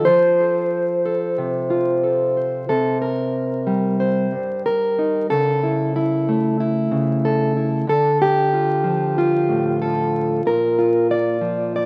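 A full-bodied, up-front jumbo steel-string acoustic guitar, fingerpicked and plugged in, carries this short, intimate folk passage alone at 93 BPM in a straight 4/4, ranging from G2 to D5. Its reflective progression moves from F to C5 at 2.7 seconds, then through A/C#, Dm and Bb, tuned slightly low to A4 = 439 Hz. A moderate large-studio reverb surrounds it, and the crackle of a very old 78 rpm record gives the sound an aged, dusty patina.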